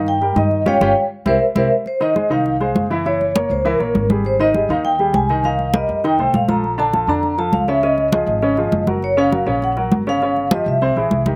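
A dark, ringing vibraphone with a fast motor vibrato carries the melody up front in this driving, fiery Afro-Cuban jazz excerpt in F minor at 201 BPM, backed by an open, short-sustained baby grand piano. Woody, thumpy pizzicato upright bass and bright, thin-skinned, close and dry congas played with soft hands fill out the groove, and the whole band hits an accent from 0.7 to 1.9 seconds before the harmony moves through Fm7, Gb9 and Abmaj7 toward a closing C7alt. The recording is dry, with little reverb and an outdoor feel.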